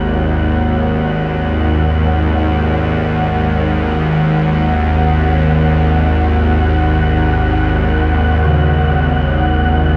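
A tense, string-like drone sits up front in this dark ambient excerpt, its sawtooth edge and ring-modulated grit trembling with vibrato as it sustains low between G#1 and D#2 over a G#5 chord. Behind it, a breathy, wind-like tuned noise texture hovers on F#5, while a bronze gamelan-type metallophone plays ringing arpeggios through a delay, fading in across the full 10 seconds. The mix sits in a huge reverb with a 7.3-second tail, conjuring a vast, ominous, echoing space.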